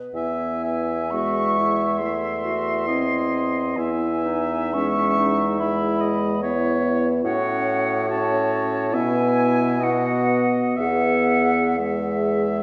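A clear clarinet opens this tender slow romantic movement for wind quintet in E major at 68 BPM, joined almost at once by a pure, distant silver flute carrying the expressive melody, a warm French horn, an up-front bassoon with light vibrato on the bass, and an oboe's soft-attack second line, all moving with a rubato, unevenly paced pulse through a reverberant recital hall heard from further back in this 12.6-second excerpt of a longer piece.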